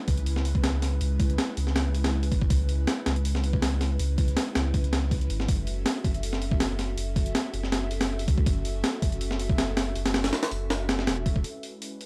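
This drum and bass and jungle track runs at 161 BPM in C# minor, frenetic yet nostalgic, and is heard as a short cut from a longer piece. A sampler-style breakbeat kit sits up front, compressed and gritty, with a thumpy kick, a high-tuned snare and hi-hats carrying a slight swing on the sixteenths inside a small room reverb. Alongside it, a deep, thick sub bass with tube saturation, also up front, holds sustained notes with a fast attack from 0.1 s. An airy, breathy pad blends a detuned sawtooth with a noise layer, a moving notch and chorus, laying soft, mellow chords over C#m7 and then F#m7 at 5.5 s. The recording has a dry hardware character flecked with vinyl crackle.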